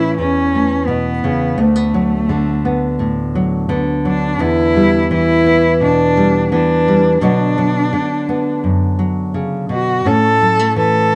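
In a straight 4/4 pulse, this hopeful, tender folk fragment cut from a longer piece sets a single bowed cello, rich and nasal with vibrato and a slapback echo, carrying the melody over a dark, full-bodied fingerpicked nylon-string guitar, both up front for the full 11.2 seconds as the chords move from A through D6, Em7 and Bm back to A, all in a light studio reverb with the rough feel of a home demo mix.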